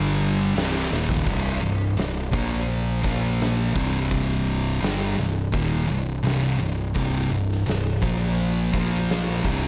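A straight 4/4 pulse at 84 BPM drives this hypnotic, brooding stoner and doom metal excerpt in C minor, where two fuzz-distorted picked electric guitars grind out the riff, one dark and up front and the other warm and set in the background, over a growling, overdriven picked electric bass and an oversized, low-tuned acoustic drum kit of crash cymbal, hi-hat, punchy kick, medium-tuned snare and toms that sounds gritty and saturated in a bright stone room, with a drum fill at 0.9-1.3 s leading from the opening G5 and Cm chords into a C5, Bb5 and Cm progression, all in a small room ambience.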